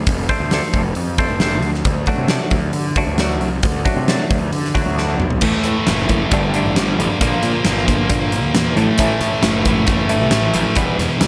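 Quiet-loud alternative rock at 134 BPM in 4/4, anthemic and bittersweet, cut from a longer piece. A growly, overdriven picked bass and a huge arena drum kit with a fat snare and punchy kick open the track, joined almost at once by a twangy, clean electric guitar playing compressed arpeggios through tremolo. A drum fill at 5.0 seconds leads into the louder passage at 5.4 seconds, where a thick fuzz guitar enters up front with a bright, distorted riff. The harmony moves from F6 and D to A5, Gsus2 and Bb, returns to A5, and arrives on Em. Light reverb and small-room ambience frame the sound, and the up-front drums carry a pumping, hall-like presence.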